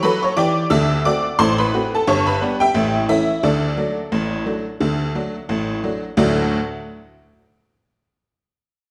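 A tack piano opens this short cut from a longer ragtime piece, its jangly, metallic tone sitting up front from the first moment. Playing alone, it covers a range from G1 up to E6 in a cheerful, lively two-beat feel with a swung sixteenth-note lilt. The harmony moves from D to D7, on to G and A7, and settles back on D at 3.4 seconds. At 6.2 seconds the tune turns toward a new section, and the piano stops at 6.6 seconds. A wet, large studio reverb surrounds the bright, open, percussive, vintage sound, like a band playing live in one room.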